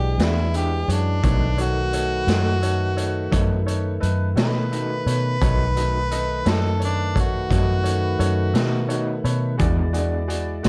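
An overdriven harmonica carries the melody in this slow blues excerpt, a present, jazz-style solo voice with light vibrato and scooped notes that finishes at 9.2 seconds. The laid-back, soulful groove moves at 57 BPM in a straight 12/8. It rests on a round, foam-muted fingered electric bass and a raw garage drum kit of hi-hat, boomy kick and medium-tuned snare, both placed up front, with the kit gritty and saturated and its top rolled off. Behind them, a tonewheel organ holds fat, clean sustained chords through a slow rotary speaker, while a brilliant, woody upright piano accompanies and adds a fill from 8.6 seconds. A twangy, slightly broken-up electric guitar played through a small old amp is picked in the background with tremolo. The harmony moves from E7 to B7 and back to E7, the tuning sits at A4 = 443 Hz, and a small room reverb gives the production a dark, warm glow.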